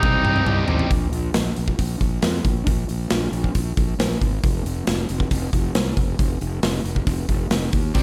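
A driving, swaggering classic rock groove in straight 4/4 at 136 BPM opens with a drum fill across the first 0.9 seconds, played on a big, punchy rock kit with hi-hat, kick, a medium-tuned snare and toms set up front in a studio room. A fingered electric bass runs throughout, dark and round with overdriven fuzz, holding the low end between F1 and F2. In the opening moments a cor anglais with a soft attack and light vibrato sounds a brief classical-style phrase on Eb4, touched by slapback echo, while a bright, double-tracked, compressed guitar picks a distorted riff ranging from C3 to G4 before dropping out at 0.9 seconds and returning only at 7.9 seconds. The harmony moves from Cm to Bb5 at 0.9 seconds and on to F5 at 4.4 seconds, leaving drums and bass to carry the main section. A moderate recital-hall reverb blends with small-room ambience for a big arena sound in this short cut from a longer piece.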